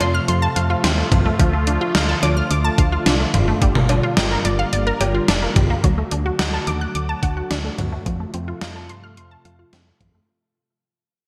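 An up-front gated 80s digital drum machine, with its thumpy kick, gated-reverb snare, toms, hi-hat and cowbell, drives this cool synth-pop excerpt at 108 BPM in 4/4 over a punchy, round FM bass, squelchy detuned blip-pluck arpeggios treated with digital delay, and an evolving slow-attack pad holding sustained chords through F, Dm, Gm7 and D, the pluck and pad both carrying chorus, in a bright, lush-hall 1980s-style mix that begins fading out at 5.8 s.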